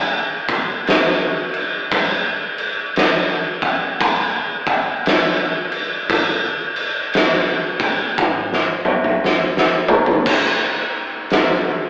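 An oversized, low-tuned acoustic drum kit enters at 0.5 seconds, setting a brooding, heavy metal mood at a slow 58 BPM in 4/4 with a swung eighth-note feel. Crash cymbal, kick, snare and toms sit up front, with a fat snare and a punchy kick giving the kit its weight, while its dark, gritty character carries the sound of a bright stone room. The recording is rough and dry, like a rehearsal-room take pushed through tube saturation and filtered to an AM radio sound. A drum fill rolls in at 8.2 seconds and carries the first section into a brief second section at 10.3 seconds. The kit is the only part in this short cut from a longer piece.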